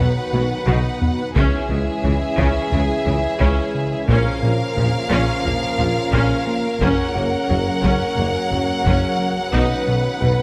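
A straight 4/4 pulse from a heavy-stick taiko ensemble, with a fill at 0.3 seconds, drives this relentless, tense excerpt of hybrid orchestral and electronic film score, where a lush, focused violin section carries the melody over a smooth second violin line, distant violas, and a bass of rich cellos, very quiet double basses and a mellow tuba, while a round analog bass plays a riff and dark French horns, clear trombones and a hollow, warbling chorused pad hold the harmony in the background, and a dark, intimate baby grand piano with audible action noise adds faint texture until 1.4 seconds and again from 6.1 seconds.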